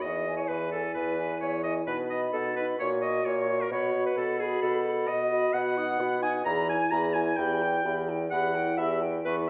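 Graceful and lively, this quick classical-period wind quintet movement at 130 BPM, played with rubato, sets an airy, vibrato-tinged silver flute melody over a bright oboe second line, a dark clarinet and mellow, soft-attacked French horn accompaniment, and a warm bassoon bass, all heard from further back in a wet recital hall over a 9.5-second cut from a longer piece.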